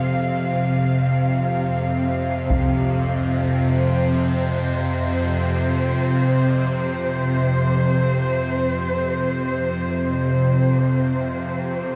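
Dark ambient drone in free time, tuned to A4 = 439 Hz, this cavernous excerpt from a longer piece sets muted, con sordino cellos holding veiled sustained chords with light vibrato against a bright, tense, sawtooth-edged drone whose detuned unison, noise layer, vibrato and phaser give it a bowed, string-like quality, both held up front for the full 12 seconds. A brief burst of hard-stick taiko ensemble, close, dry and low-pass filtered, sounds in the background from 2.5 to 2.7 seconds. The cellos and drone hang in a vast, echoing cathedral reverb with a 5.7-second decay.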